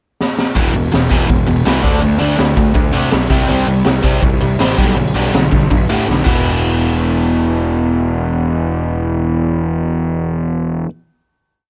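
Punk rock at 163 BPM in E minor, angry and raw, a short whole piece where a raw garage drum kit with a high-tuned snare and punchy kick fills in at 0.2 seconds, then a biting, double-tracked overdriven guitar pounds palm-muted eighth notes over E5, D5, C5 and G/B as a growly fuzz bass drives eighth notes beneath, the drums fill again and stop at 6.3 seconds, and the guitar and bass ring out on a final E5 hit until 10.9 seconds, all dry and up front.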